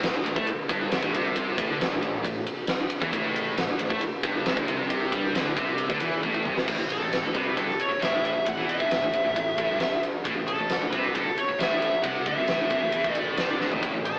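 A rough rehearsal-room recording with an AM radio sound and a moderate stone-room reverb frames this anthemic, swaggering hard rock excerpt at 134 BPM in a straight 4/4. From the start, three rhythm guitars grind out a low riff in the background: one warm and overdriven, one scooped and high-gain with distortion, and a very quiet double-tracked scooped guitar beneath them. A growly, fuzz-laden picked bass with overdrive sits under the guitars, while a huge arena drum kit sits up front with a fat snare, punchy kick, toms, and bright crash and ride cymbals. A drum fill at 6.2 seconds leads into the second section, where a bright, distorted high-gain lead guitar enters up front at 6.9 seconds to carry the melody. Another fill at 13.6 seconds arrives just before the clip cuts off, as though it's been lifted from a longer piece.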